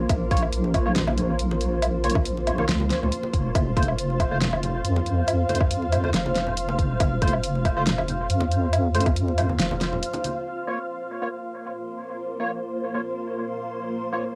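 Lightly reverberant home cassette sound frames this meditative, cavernous half-time deep dubstep fragment, where a blurred, evolving granular pad sustains chords throughout while a dark, saturated wobble bass, a tight tape-warm electronic kick, an overdriven house kit with fat snare, hi-hat and woodblock, background congas ringing through dub echo, and hollow, ring-modulated organ stabs carry the groove until a break at 10.0 s leaves only the pad and stabs to close.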